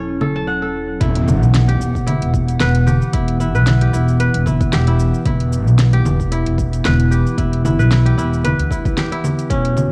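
A warbling, nostalgic tape-like pad, a crisp fingerpicked kora with analog delay and a woody, up-front pizzicato upright bass open this meditative, organic downtempo piece, cut from a longer work and recorded at home on cassette with little reverb. A layered deep house kit of cabasa, congas, metallic hats and a fat snare slips in at 0.2 seconds, with overdrive and a small-room, cassette-tape grit. At 1.0 seconds a punchy, overdriven electronic kick arrives alongside a background impact, while the pad and bass pump with sidechain under a lightly swung sixteenth-note feel.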